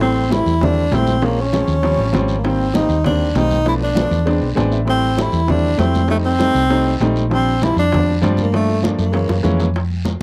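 A close-miked tenor saxophone leads this sunny, lively Afro-Cuban jazz excerpt at 197 BPM in 4/4, singing a warm, soft-edged solo with vibrato up front beside a dark, amped hollow-body electric bass. A natural-sounding baby grand piano with short sustain comps through shifting changes such as Am7, Abmaj9 and Bb69, adding a brief fill at 4.4 seconds. In the background, ringing high-tuned congas, round low-tuned bongos and a raspy, vintage guiro fill out a dry, close 1970s-style studio sound.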